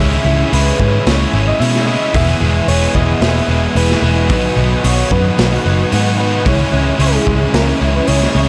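Shoegaze and dream pop rock at 111 BPM, wistful and hazy, this excerpt drifts through C#madd9, Emaj7 and B6 as a gentle, keys-like FM synth lead with chorus, vibrato and analog delay carries the melody over a dark, detuned wavetable pad that morphs and sustains in the background with ensemble chorus and built-in reverb. Two overdriven guitars play riffs: a shadowy picked electric set back in the mix with subtle chorus, and a hollow-body semi-hollow lifted by reverse reverb. Up front, a round, foam-muted vintage bass anchors the low end, a gritty, saturated garage kit with a punchy kick and pumping small-room sound enters at 0.5 seconds, and a very quiet, bright, twangy clean guitar adds arpeggios from 6.5 seconds.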